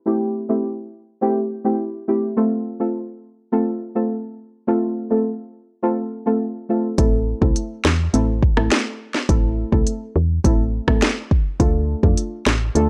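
A deep, mellow chord stab carries this hypnotic, bouncy dancehall excerpt, its nasal, plucky tone softened by chorus and a low-pass filter, and it plays alone from 0.1 seconds under a filter sweep. The harmony moves from Am7 to F in this opening stretch. At 7.0 seconds a round, woody FM bass with a fast, decaying attack joins, along with an electronic afro-pop drum kit that brings a deep kick, sharp snare, rim clicks and smooth hi-hats roughened by vintage 12-bit sampler grit. Over this fuller second stretch the chords shift from Am to Dm, with the bass, drums and stab all sitting up front. The sound is dry, with the gritty character of hardware and cassette tape, and the piece runs until 12.9 seconds.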